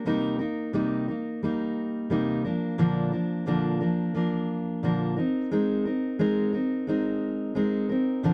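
A dark, warm production with a light touch of reverb frames this short pop clip, which is cut from a longer piece and runs about 8.3 seconds. A fingerpicked steel-string acoustic guitar plays alone throughout, its jumbo body giving a full-bodied tone that sits up front. The mood is carefree and easy-going, moving at 88 BPM in 4/4 with a gentle 55% swing on the sixteenth notes. The guitar spans Bb2 to Bb4 over a brief progression of Cm7, Bb and Abadd9. The instrument is tuned slightly below standard pitch, to A4 = 439 Hz.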